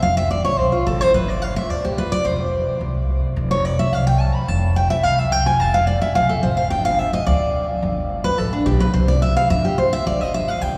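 A straight 4/4 pulse carries this joyful bluegrass fragment, cut from a longer piece, at a brisk, breakneck clip. A bright, full-bodied dreadnought steel-string guitar, picked with fresh strings and placed up front, takes a virtuosic solo across the whole 10.8 seconds, ranging from D4 up to B5. Beneath it, an upright bass with gut strings plays pizzicato from start to finish, its woody, dark, thumpy tone sitting slightly lower in the mix. The harmony moves from F to G5, back to F, then through Gsus2 and C5 before returning to G5 at 10.1 seconds, with the passage stating its opening idea twice. The recording sits in a church or concert hall drenched in a long cathedral reverb, lending the lively picking a spacious, ringing halo.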